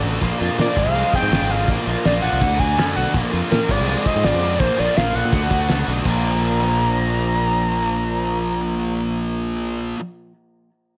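A thick, dark fuzz guitar riff, a growling, overdriven fingered bass up front and a very quiet, brassy analog pad of detuned sustained chords open this carefree, upbeat indie rock excerpt, with a cloth-damped, thuddy drum kit of fat snare, tight kick, rim clicks and dark crashes joining at 0.1 seconds. A bright, overdriven semi-hollow guitar riff with lush chorus and digital delay sits in the background, while a screaming, guitar-like synth lead with vibrato and delay carries the melody from 0.6 seconds. The drums stop at 6.7 seconds, and the dry mix has the worn, warbling pitch drift of old cassette tape.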